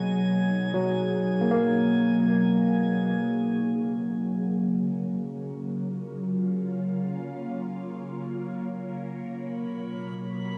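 Ambient in free time and a reflective, serene mood, this short excerpt from a longer piece sets an ethereal, airy pad of sustained chords, treated with ensemble chorus, phaser and reverb, alongside a bright, barky tine electric piano playing lush-chorused arpeggios with tape echo until 5.1 seconds, while a faint, glassy texture of drifting overtones floats high above at the start and returns at 9.6 seconds, the harmony moving from Abm7 to Gbmaj7 and landing on Bmaj7, all captured with a cassette home-recording character in a wet studio reverb.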